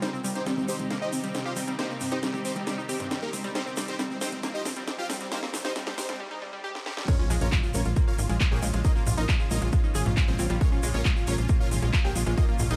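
Opening on a build-up, this excerpt of soaring, euphoric uplifting trance presents huge, detuned supersaw chords carrying the melody in the background under a filter sweep, with chorus, digital delay and sidechain pumping. A catchy, full-bodied plucky unison lead traces a second line, while a thick, slow-attack unison pad holds sustained chords and a bright, short-decay unison pluck spins arpeggios through a cassette-tape tint. A house drum kit with a cracking snare, metallic hats, congas, handclaps and crash plays fills in a small room, joined by a grainy egg shaker, and a very quiet riser and impact sweep in from 3.3 seconds. After a brief break, the drop lands at 7.1 seconds as the chords move from Cm to Bbm and a punchy, tape-tinged electronic kick arrives up front. A tight, driving sequencer bass with a ring-modulated, filter-plucked sawtooth and square edge enters moments later, pumping under the sidechain beside the kick.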